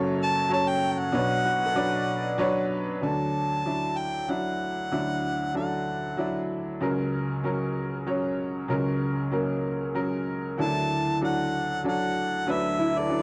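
Acoustic folk-pop ballad in 3/4, melancholic and intimate: an up-front upright piano, bright, woody, worn and slightly detuned with long sustain, carries the accompaniment, while a punchy, warm harmonica with vibrato and scooped notes sings the pop-style melody up front through a cassette-tape tint, pausing at 6.5 seconds and returning at 10.6 seconds, and a fingerpicked, ringing concert harp adds arpeggios in the background of this homespun cassette recording with moderate reverb.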